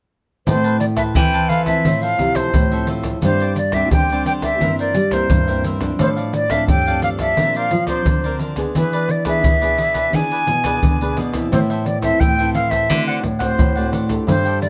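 Samba and choro in A minor at 87 BPM, this bittersweet, yearning excerpt sets an airy silver concert flute with vibrato and a soft attack up front over crisp picked cavaquinho, a fingerpicked nylon-string guitar, a thumb-plucked nylon-string guitar bass and close-sounding maracas, tight surdo and pandeiro, moving through chords from Amadd9 and Bbadd9 to E7 and D7 in a detailed, lightly reverberant recording.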